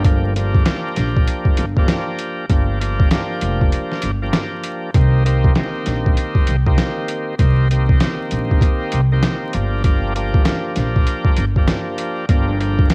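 Gritty, overdriven, pitched-down sampler drums with a thumpy kick, medium-tuned snare and hi-hat sit up front in this dark, reflective boom-bap hip-hop excerpt at 98 BPM in G minor, carried by a woody pizzicato upright bass on gut strings and a bright, shouting tonewheel organ through a slow rotary speaker, moving from Gm7 to Cm7 and back with a break at 3.7 seconds, over a home-cassette ambience flecked with vinyl crackle.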